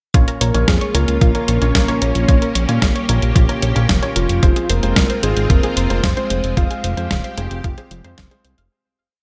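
A thick, detuned sawtooth bass drives a sequenced sixteenth-note line up front in this danceable, melodramatic italo disco piece in F minor at 112 BPM, backed by a thumpy four-on-the-floor electronic kick and a tape-warm disco machine beat of closed hi-hat and fat snare, with lush string-machine chords under ensemble chorus, a round, bright pluck arpeggio with cassette tape and delay in the background, short dotted-rhythm grand piano stabs, and a soft octave-layered synth lead singing hook phrases with vibrato and tape echo, the harmony shifting from Bbm to Fm at 4.4 seconds before the piece fades out from 5.9 seconds.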